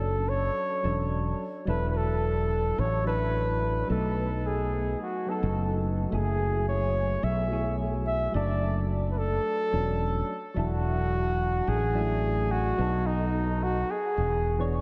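This is a wistful, smooth slice of sunset chillout at 108 BPM in a straight 4/4, opening with a mellow flugelhorn melody, soft electric-piano-like synth keys and a fretless electric bass all sounding together from the first moment. The flugelhorn sits up front as a solo voice in a classical style, its line carried on a touch of delay. Beneath it, the synth keys offer round, gentle accompaniment with a sine-like tone, a filter sweep, fast attacks that decay away, and a chorus-and-delay shimmer. The fretless bass is growly, direct and amped, placed up front with a subtle chorus, and stays low, between E1 and B1. The harmony drifts through Dmaj7/F#, E9sus4, B7 and F#m9 before circling back and landing on E7 at 13.9 seconds. A lush hall reverb of about 2.7 seconds soaks the mix in a dreamy haze, and the passage is cut from a longer piece.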